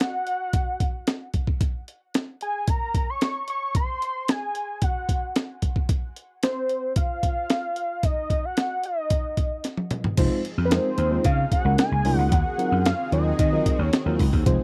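A fat, detuned analog lead with chorus and vibrato carries the melody up front over a gritty, compressed, sampler-style breakbeat drum kit with a thumpy kick in this danceable, late-night early-eighties boogie funk excerpt, and after a drum fill at 9.6 seconds, a punchy slap bass, a round, warbling FM electric piano with chorus and tremolo, and a lush unison pad with chorus and phaser sitting in the background all enter at 10.2 seconds as the chords move through Fm7, Db69 and Ebm69 in a dry, close studio sound.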